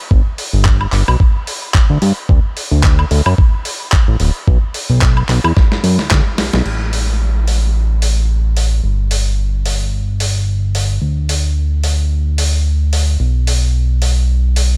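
Sleek and sensual, this nu-disco excerpt moves at 110 BPM in 4/4 with a light 16th-note swing. A fat, thick analog bass with a sawtooth edge, fast attack and sustained notes sits up front, ranging from D1 to G2 across the whole cut. An overdriven electronic kick with a gritty, thumpy, compressed punch drives the groove until 6.2 seconds, carrying small room ambience. Beneath it, a dusty soul sampler-style kit adds hi-hat, a medium-tuned snare, handclaps, woodblock and crash cymbal, its gritty, overdriven sound set lower in the mix. A drum fill at 5.6 seconds leads into a new section at 6.7 seconds, where the bass and sampled kit carry on in a dry, close-sounding space.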